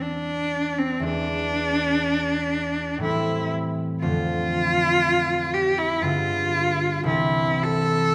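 Lyrical and warm, this short romantic classical passage for cello and harp moves in a rubato 3/4 at 60 BPM in C major, tuned to A4 = 438 Hz. A single bowed cello, clear and focused with vibrato, carries the melody between C4 and A4 up front, while the concert harp supplies a ringing, fingerpicked accompaniment from C2 to C4, set slightly lower in level. Both play throughout the 8.1 seconds over a progression that settles from G7b9 onto C at 7.1 s, all bathed in a wet concert hall reverb of 1.8 s.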